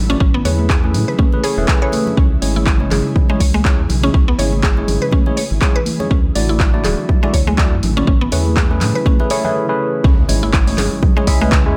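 An ethereal, airy pad and a round, deep analog bass open this afro house excerpt, the pad holding sustained chords in the background under a shimmer of ensemble chorus and its own reverb while both pump against the sidechain. Within the first half second a woody, mallet-like synth pluck spins arpeggios with chorus and dub echo, a clean tine electric piano through a combo amp adds phased, echoing stabs, high-tuned congas with a thick-skinned, acoustic tone sit in the background, and a punchy, overdriven electronic kick lands up front, soon joined by a layered house kit of handclaps and hi-hat. The groove moves at 122 BPM in 4/4 with a gentle 16th-note swing, in C# phrygian with slightly flat tuning, and the mood is warm and earthy. The harmony moves through Amaj7, C#m and Dadd9 before returning to Amaj7, and the mix itself stays dry apart from the effects on individual parts. A brief break at 9.6 seconds gives way to a drop at 10.0 seconds on C#m, marked by a very quiet electronic impact that carries to the end.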